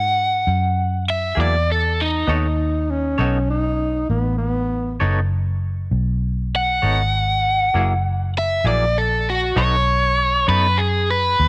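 An overdriven electric guitar, bright and compressed with a phaser, carries the melody over a dark, round, foam-muted fingered bass in this swaggering, laid-back slow blues at 66 BPM in 12/8, set in B mixolydian and moving through F#7sus2, B9 and F#9 chords. A clean, picked electric guitar with tremolo adds accompaniment from 1.4 seconds, and a breathy tenor saxophone with subtone, vibrato and scooped notes briefly sings an intimate, whispered second line from 2.3 seconds. At 9.6 seconds the overdriven guitar takes a solo, all within a light digital reverb, before this cut from a longer piece ends.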